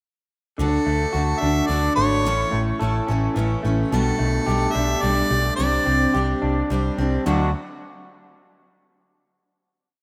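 A harmonica with light vibrato and scooped notes plays a jazz-style, motif-based solo melody up front through an analog delay, entering at 0.6 s and dropping out at 6.4 s. Beneath it, a picked steel-string acoustic guitar strums sixteenths in open chord shapes, an electric guitar through a small old amp adds dark, slightly broken-up picked arpeggios, and a round, hollow-body electric bass drives eighth notes through D, A, Gadd9/B and Csus2 before the band settles on a final D chord at 7.3 s. This brief, complete folk rock and heartland rock piece moves at 108 BPM in 3/4 with a warm, nostalgic mood, bathed in lush hall reverb within a rough home-demo mix.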